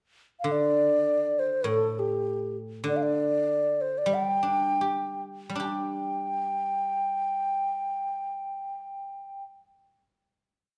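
A moderate recital-hall reverb surrounds this complete piece of Chinese traditional chamber music, graceful and pastoral in mood and flowing in a free rubato 2/4. A reedy, airy low xiao, close-miked and up front with a straight tone and crisp attack, carries a modal melody with ornaments, while a silvery, ringing guzheng played with fingerpicks, also up front, supplies a low-string accompaniment. The music slows from 2.9 seconds into a final chord at 5.6 seconds, and the guzheng sounds on alone after the xiao stops, until 10.8 seconds.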